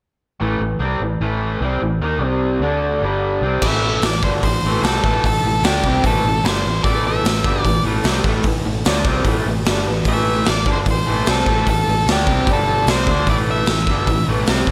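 This gritty, smoky stretch of blues rock with a southern rock lean opens with an overdriven garage guitar riff, bright, picked and double-tracked up front with a touch of spring reverb, alongside a dark, round, foam-muted fingered electric bass, moving from Am7 through C5, D5 and G5 chords. At a straight 149 BPM in 4/4 and in A minor, the pair sets up the groove before the full power trio arrives at 3.6 seconds. There the drum kit enters, acoustic and saturated, with a punchy kick, medium-tuned snare, hi-hat and crash cymbal in a pumping stone room, its top rolled off. At the same moment an octave-fuzz lead guitar takes the melody, dark and distorted, while the harmony settles on A minor with a brief turn to G5 near the end. The whole passage sits in a light, small room reverb and feels like a slice cut from a longer piece.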